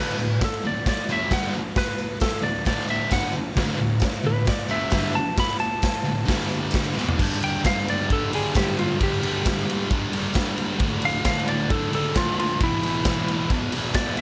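A punchy, saturated garage drum kit powers this raw, swaggering garage rock excerpt from a pumping stone room, marking the turn into the second section with a fill at 7.0 seconds, while a thick, double-tracked fuzz guitar drives a low riff up front, a dark, compressed slide lap steel carries the melody through tape echo, and a jingly tambourine sits close and dry in the background.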